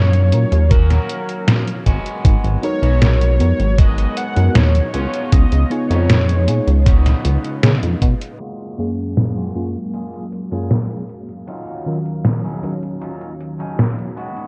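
A velvety synth lead, a mellow FM electric piano and a glossy chorused synth bass open this faded, nostalgic vaporwave fragment together, cut from a longer piece and moving at an unhurried 78 BPM in F# major. A silky string machine sits in the background with phaser and ensemble chorus, while a bright, twangy electric guitar at the edge of break-up picks a riff softened by lush chorus, a low-pass filter and analog delay. The drums sound sampler-gritty and tape-warm: a detuned 8-bit drum machine supplies hi-hat and a medium-tuned snare with gated reverb, and a thumpy electronic kick enters at 0.7 seconds, both up front. The lead carries the melody through cassette-tape character and tape echo before falling away at 7.2 seconds, and the kick and bass drop out soon after. From 8.4 seconds the harmony resolves from C#7 onto F#maj9 as a filter sweeps across the string machine and guitar, leaving piano, strings, guitar and drum machine to drift through a lightly reverberant, cassette-dulled haze.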